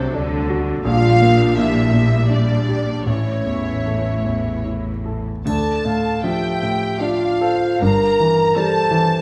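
In a rubato 3/4 at 71-86 BPM, this brooding, tragic romantic movement in D minor for piano and orchestra puts a clear concert grand with deep bass up front on the melody, joined by distant vibrato violins also carrying the tune, while a dark clarinet, mellow flutes and a smooth second violin line add supporting lines, focused violas, lush cellos and double basses sit in the background, roomy French horns hold sustained chords, and a dry triangle sounds from 5.5 to 7.0 s, all set in a wet scoring-stage reverb.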